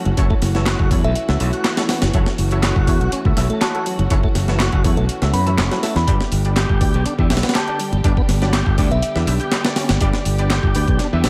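Breakbeat with a swaggering, energetic strut, this short cut from a longer piece rides a straight groove under a dusty layer of vinyl crackle, with little reverb on the room. Up front, a gritty, pitched-up sampler-style breakbeat kit delivers a thumpy kick, medium-tuned snare and hi-hat, layered with an overdriven electronic house kit of handclaps and hi-hat re-recorded in a large room. A bright, growly fingered electric bass sits punchy and direct alongside, while a full tonewheel organ with audible key click, fast rotary speaker, light overdrive and tape echo plays the riff. In the background, a smooth bowed string section holds sustained chords with vibrato, roughened by 12-bit sampler grit and sidechain pumping, and bold, detuned sawtooth orchestra-hit stabs with ring modulation and a filter sweep carry their own reverb and tape echo. A glassy, crystalline FM bell melody enters at 1.0 seconds, thinned by a telephone-like filter with chorus and echo, as the harmony moves from F#m7 to G at 6.1 seconds.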